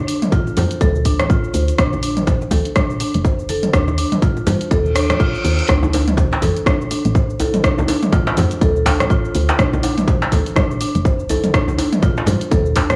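Over a swung sixteenth-note groove, this earthy, hypnotic afro house fragment sets a punchy, up-front electronic kick and a layered house kit of cabasa, hi-hat, rim click and toms against ringing, low-tuned congas in the background, while a round, woody FM bass and a dark, smooth marimba playing filtered, delayed arpeggios pump with the sidechain, a brief electronic reverse cymbal at 4.9 seconds ushers in a deep, saturated djembe at 5.7 seconds, and spring reverb with a cassette-tinged home-recording character colours the whole.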